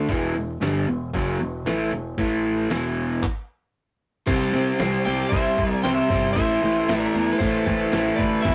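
Hard rock with an aggressive, driving feel, this rough rehearsal-room take sets two crunchy, picked overdriven guitar riffs, one up front and one in the background, over a growling, punchy overdriven bass and a muffled lo-fi sampler-style drum kit with thumpy kick, fat snare, handclaps, hi-hat and crash, halts for a stop from 3.2 to 4.3 seconds, then brings in a dark, slightly broken-up lead guitar melody at 4.3 seconds with a distorted octave-fuzz guitar line tucked behind it.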